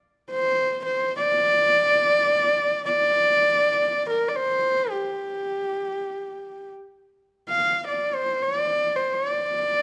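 In free, unmetered time, this windswept and solemn piece of Mongolian folk music features a lone horsehead fiddle, entering at 0.3 s and playing solo until 9.8 s within a range of G4 to F5. The single bowed player's husky horsehair tone sits up front and intimate, shaped by soft attacks, light vibrato, sliding portamento and an airy bow. Close, detailed microphones capture the fiddle, while a moderate recital hall reverb adds a sense of space to this brief passage taken from a longer performance.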